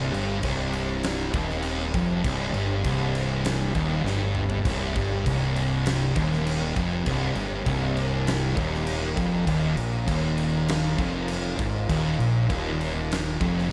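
Two fuzz-drenched electric guitars open this hypnotic, brooding stoner and doom metal excerpt at 100 BPM in C minor: one dark and distorted in the background, the other warm and up front, both picking a low, heavy riff alongside a growly, overdriven fingered bass. A very quiet, nasal analog drone sustains chords underneath with slow attack, long release and chorus, while the big acoustic drum kit in a bright stone room enters at 0.1 seconds with a fat snare, punchy kick, crashes, splash and toms, breaking into a drum fill at 4.1 seconds. The harmony rests on C minor before shifting to an Eb power chord at 9.5 seconds, all inside a small room ambience.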